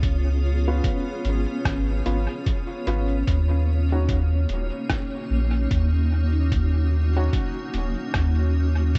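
From the outset, a granular cloud pad fills this ambient dub excerpt with sustained, blurred chords, its detuned unison tones and built-in reverb forming an evolving haze over a deep, round sub bass that sits up front. Underneath, a muffled, thumpy electronic kick and a lo-fi sampler-style kit of hi-hat and rim click carry a 16th-note swing, both pitched down, compressed and tape-softened as if re-recorded in a small room, with dub echo trailing the kit. At 0.7 s a dark upright piano enters with short, woody stabs, its worn, slightly detuned tone and audible action noise giving an intimate, boxy character, also sent through dub echo. The harmony moves from Db7 to Ebm7 at 3.3 s, keeping the mood meditative and spacious. The overall sound is dry, with vinyl crackle and a dulled top end lending it a dusty, aged feel.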